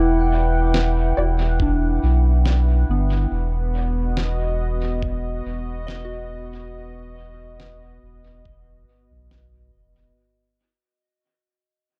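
Spacious and meditative, this ambient dub excerpt moves at 70 BPM in a straight 4/4 over Em9 and B/E chords, with a fade-out running through its ten seconds. A smooth, warbling vintage pad sustains chords with chorus while a pure, gentle FM bell plays arpeggios through chorus, low-pass filtering and dub echo, all over a round, up-front sub bass. A fat, muffled electronic snare enters at 0.7 s with dub echo, a brief dark chord stab sits in the background at 1.2 s with phaser and echo, and a thumpy kick joins at 1.6 s in a dry, echo-heavy mix.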